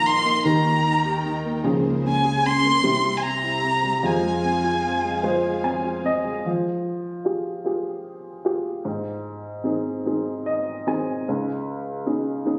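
In 6/8, this reflective, intimate acoustic folk-pop ballad excerpt opens with a dark, expressive violin singing up front with vibrato, portamento and tape echo over a woody, slightly detuned upright piano, a felt-muted piano's soft, mellow arpeggios, lush background strings and a round fretless electric bass, until violin, strings, muted piano and bass fall away by 6.5 seconds, leaving the upright piano alone through to 12.6 seconds, all set in a moderate scoring-stage reverb with the compressed sound of a phone recording in the room.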